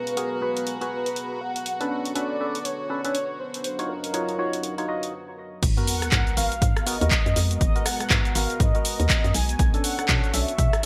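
This excerpt of late-night deep house at 121 BPM in G# dorian opens with a mellow, horn-like synth lead carrying the melody over a smooth analog pad, a moody ambient pad and a floating violin section, while a punchy, up-front analog drum machine with handclaps, cabasa and hi-hat and a hollow, percussive organ stab under a filter sweep join within the first second. The violins stop at 5.1 s, and at 5.6 s the drop lands with a tape-warm electronic kick, a bouncy, knocking FM bass with tube saturation and a very quiet sub drop, the pads and stab pumping against the beat. Lush minor-ninth chords moving from G#m9 through Bm9 and D#m9 sit inside a bright 1980s-style digital production with light reverb.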